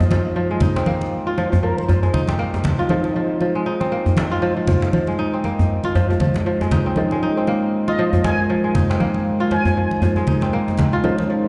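Afro house with a driving, warm pulse, built on deep djembe with metal rattles and thick-skinned congas struck with hard hands, ringing fingerpicked kora arpeggios up front with dub echo, soft stabs from a felt-muted upright piano, and a moody detuned analog pad in the background under chorus, while a smooth, expressive sawtooth synth lead with vibrato, lush chorus and dub echo sings brief melody lines at 1.6 and 7.9 seconds as the harmony shifts from Fm7 to Eb7sus4, all set in a big, bare room with plate reverb and a dulled top end.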